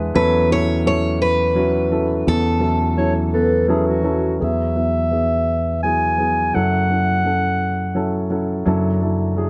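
A slow, straight 6/8 sway at 57 beats per minute, counted in dotted quarters, carries this heartfelt, tender acoustic folk-pop ballad in A major, a fragment of a longer piece. An up-front grand piano with short sustain and a round, amped fingered electric bass hold down the accompaniment throughout, while a mellow, ringing concert harp plays thumb-plucked arpeggios in the background. A picked steel-string acoustic guitar carries the opening melody with an auditorium-like presence, audible finger squeak and a touch of tape echo, dropping out at 3.7 seconds. A classical-style clarinet enters at 3.0 seconds as a second line and takes an up-front, warm solo from 4.4 seconds. The harmony moves from A6/E through Eadd9 and F#m7 to Dadd9/F#, all wrapped in light reverb with a soft, rolled-off top end.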